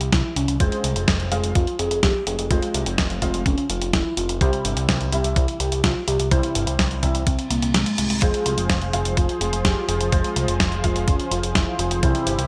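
This italo disco excerpt has a bittersweet, nostalgic mood, with a straight drive and a bright 1980s-style digital production wrapped in light reverb. A soft octave-layered synth lead carries the melody from the start, round and full with a sub-octave layer and vibrato, treated with chorus, phaser and delay. Underneath, a fat, detuned analog bass with a sawtooth edge holds the low end. A dusty soul sampler-style kit supplies gritty, compressed hi-hat and snare, up front and tape-warm, while a thumpy electronic kick anchors the beat. From 0.6 seconds a dark, worn baby grand piano adds mellow stabs through a low-pass filter and ensemble chorus, over chords that move between C and F minor. At 7.5 seconds a reverse cymbal sounds as the kick briefly drops out, and at 8.2 seconds a smooth, detuned analog pad enters with sustained chords to thicken the texture.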